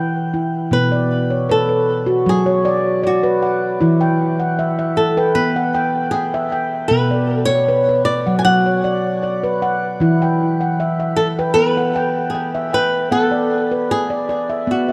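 A ringing, mellow stainless-steel handpan opens this hypnotic, gentle world meditative piece with soft-fingered arpeggios in B minor at 77 BPM, joined at 0.7 s by a bright, fingerpicked flamenco guitar melody up front, both bathed in shimmer reverb and diffuse ambient delay over a dark production with a wet echo-chamber sound, as the harmony alternates between E5 and Bm.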